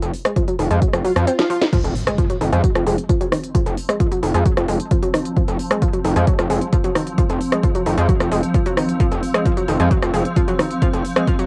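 A straight, driving pulse anchors this dark, intense stretch of peak-time techno, cut from a longer piece. A punchy analog kick sits up front beside a layered, tape-softened kit of cracking snare, smooth hi-hats, rim clicks and crash, while a gritty, saturated sawtooth bass pumps. A filter sweep on the nasal, wave-folded analog pluck riff and a background swell lead through a drum fill into the drop at 1.7 s, where an electronic impact lands. From 2.5 s muted dub chord stabs flicker very quietly, and from 3.0 s a swarming, detuned granular drone adds tense weight with its own reverb, all carrying the intimate grain of a home cassette recording in a modest booth.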